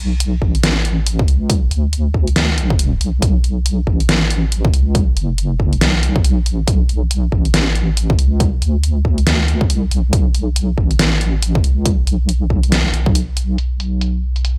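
A deep, soft wobble bass anchors this cavernous, meditative slice of deep dubstep, its detuned square and sine tones saturated, dark and thickened with chorus from the very start. A punchy, layered electronic kick enters at 0.4 s and drops out at 13.1 s, while a dubstep kit of hi-hat and deep snare, both low-pass filtered and re-recorded in a large room, sits up front over a swung, half-time groove. The dry, gritty sound carries through a short break at 13.2 s in this passage cut from a longer piece.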